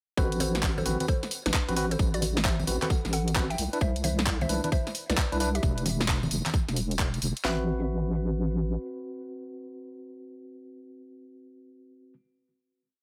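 A moody, bouncy two-step UK garage piece at 132 BPM in A dorian opens with two overdriven, up-front garage drum kits (a tight four-on-the-floor kick with cracking snare and claps, plus skipping swung hats, congas and tambourine) under a deep, wobbling, chorused bass, worn tine electric piano stabs in rootless voicings and a woody FM mallet-like pluck riff in thirds and sixths, all in a digital ambience; the drums stop by 7.6 seconds and the bass by 8.8 seconds, leaving the delayed keys to ring out a final chord until 12.1 seconds.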